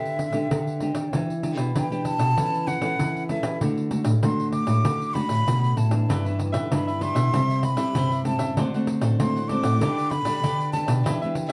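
A straight four-beat samba and choro groove opens this lively, sunny clip, with a jingly pandeiro played with hard hands and sounding close and dry. A thumb-plucked nylon-string guitar carries the bass line with a small, up-front tone and audible finger squeak, while a second nylon-string guitar fingerpicks a full-bodied, classical accompaniment through chords such as G/D, Em7, Aadd9/E and D7. Over them a breathy concert flute takes the melody as a solo, with vibrato, a soft attack and a slightly unsteady, close-miked voice, touched by a slapback echo, before falling silent at 10.9 s. At 6.1 s a crisp, bright cavaquinho joins with picked accompaniment, sitting lower in the mix than the guitars. The ensemble is heard from further back in a wet studio room, and the passage is cut from a longer piece.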